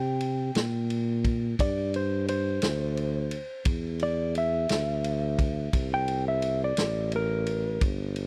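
Gritty and rollicking, this slow blues fragment in a straight 12/8 sets a dark, clean, fingered electric guitar playing a compressed second line over a tuba bass line full of vibrato and scooped notes in a jazz style. A vintage acoustic drum kit joins at 0.2 seconds with a punchy kick, medium-tuned snare and dusky ride cymbal, its top end rolled off. The dry, close 1970s-style studio sound keeps the parts intimate, and the guitar drops out at 7.8 seconds while tuba and drums carry on to the end.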